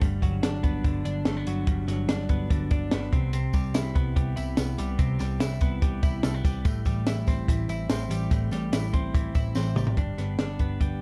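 Bright and nostalgic, this jangly indie pop excerpt moves in a straight 4/4 over a chord progression that drifts from Gmaj7 to Cmaj7 and Am7 before settling on G at 10.0 seconds. A clean, compressed twelve-string electric guitar sits up front with chiming arpeggios, its picked tone warm. Beneath it, a vintage muted electric bass adds a dark, foam-muted, round low end through an amp. A compact cocktail drum kit, recorded acoustically in a small room, drives the groove with a punchy kick, a high-tuned snare, hi-hat and toms, capped by a drum fill from 9.6 to 10.0 seconds. A jingly tambourine joins in the background from 3.3 seconds, and the whole production carries a light reverb and a dark, warm character.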